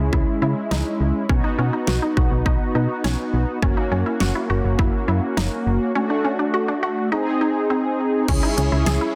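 A mellow synth brass sits up front in this cool, nocturnal synth-pop excerpt, its detuned sawtooth tone round and dark, with a filter sweep, vibrato and chorus over sustained chords. Beneath it, a solid FM bass gives punchy, fast-attack notes that decay, while a pop drum kit with a punchy kick and fat snare drives a straight 4/4 groove at 103 BPM with hi-hat and crash cymbal. A resonant blip pluck adds juicy, squelchy arpeggios, its short filter-plucked notes treated with chorus and digital delay. Near the close, at 8.3 s, a vintage string machine of violins slips in at the back with shimmering, bright sustained chords under an ensemble chorus. The harmony moves through C#m, B, F#, D and G# before returning to C#m in C# dorian, all set in a moderate plate reverb and a dense, heavily limited modern master.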